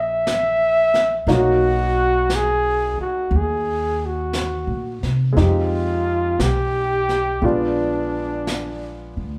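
A smoky, melancholic jazz ballad excerpt with a swung 4/4 lilt, where a breathy, mellow flugelhorn sings the melody up front with light vibrato and scooped notes over a short-sustained baby grand piano moving from Gb7 through Bmaj7 and Fm9 to Bb7b9, a woody, thumpy gut-string upright bass, and a dark, rolled-off brush kit on snare and hi-hat that enters at 0.3 seconds, all heard as a band playing live in a large studio room with moderate reverb.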